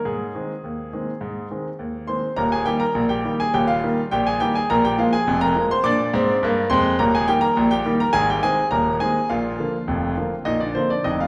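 The recording sits in a wet recital hall reverb with a long tail of about 1.8 seconds, the sound of a church or concert hall blooming around a single instrument. This is a jaunty, cheerful ragtime piano excerpt in Eb major, moving at 104 BPM in a straight 2/4. A clear concert grand carries the whole piece solo from 0.0 to 11.3 seconds, up front and present, its polished tone spanning from a deep bass at Eb1 up to D6 with long sustain. A short opening on Ab gives way at 2.4 seconds to a longer passage that moves through Eb, Bb7, back to Eb, then Ab and Bb. Cut from a longer piece, it breaks off on that final Bb chord.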